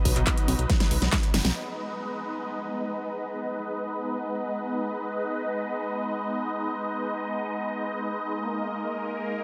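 A filtered supersaw swell of soft-attack, detuned sawtooth chords with phaser and sidechain pumping opens this emotional, bittersweet uplifting trance fragment in free time and G# minor, joined at 0.1 s by a fat, saturated analog bass and a big-room drum kit with a huge snare, metallic hats, congas and handclaps over a punchy electronic kick, the kit rolling into a drum fill from 0.7 s before the drums and bass drop out by 1.6 s, leaving the evolving pad to carry the B to G#m to D#sus4 changes through 9.4 s in a huge ambient reverb.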